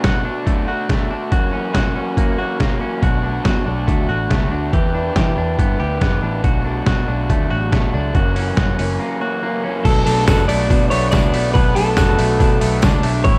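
Jangly indie pop in B minor at 141 BPM, restless and bittersweet, built on an overdriven garage guitar and a twangy, clean electric guitar playing arpeggios through spring reverb and analog delay, over a gritty, pitched-down, sampler-style drum kit with a thumpy kick that sits up front. A dark, foam-muted picked bass with a round, punchy tone joins at 3.0 seconds as the Bm7, F#7 and Em7 changes cycle. Near the end of a short break, a bright trumpet with light vibrato slips into the background at 9.8 seconds, and at 9.9 seconds a slightly broken-up, lo-fi lead guitar takes the melody alongside a very quiet, jingly tambourine.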